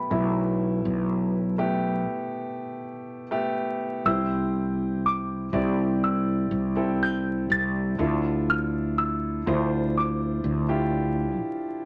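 A growly, punchy fretless electric bass sits up front in this hopeful, emotional pop ballad fragment, set at 61 BPM in a straight 4/4 in C major. Beside it, a warm concert grand piano carries the accompaniment with deep bass, a smooth vintage tone and audible action noise that makes it feel intimate. Above them, a small celesta plays the melody between B5 and A6, bell-like and delicate, its soft felt hammers giving it a mellow, dark sweetness. The harmony moves from Gadd9/B to C and then Dmadd9, with a break arriving at 2.1 s before a new section opens at 4.0 s. The piano rings on briefly after the bass and celesta stop, ending at 11.9 s, while a wet studio reverb adds space and vinyl crackle sits over the sound.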